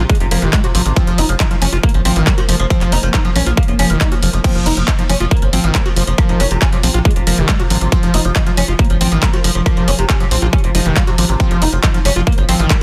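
This hypnotic, driving psychedelic trance excerpt in F minor at 138 BPM opens with a bright, woody oud melody, phased and pumping with tape echo, over a screaming, squelchy acid riff that is distorted, chorused and filter-swept, along with a tight, punchy sequencer bass and a swarming, granular drone holding very quiet sustained chords. From 0.1 seconds an overdriven, up-front electronic kick drives the 4/4 pulse alongside a layered big-room kit of crash cymbal, handclaps and hi-hat. A very quiet, juicy blip pluck surfaces in brief flashes at the very start, around 5.5 seconds and again near the end, all within a dry, dense and heavily limited modern master.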